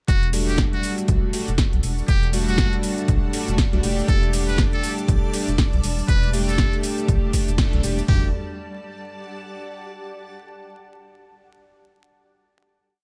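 Deep and moody, this short deep house piece in E minor moves at 120 BPM with a swung 16th-note feel, riding a single Em11 chord through a drop that runs from 0.1 to 8.1 seconds before a rootless Em11 closes it out. A punchy analog drum machine sits up front with a four-on-the-floor kick, floor tom and open hat, its sound re-recorded in a large room. Beside it, an overdriven deep house kit adds metallic programmed hats, a shaker and a punchy snare on the backbeat. A round, dark analog bass plays a syncopated riff under sidechain pumping, while a chorused polysynth fires glossy, retro chord stabs in close voicing, colored by cassette tape and tape echo, over a very quiet, smooth pad. Over this, a buzzy trumpet with a metal mute carries a repeating jazz-style riff with light vibrato through tape echo. A cloudy granular pad drifts in at 1.4 seconds with slowly shifting chords and lingers to the end, shimmering string-machine violins hold a high note in the background from 4.1 seconds, a band accent lands at 7.6 seconds, and vinyl crackle hangs over the whole piece.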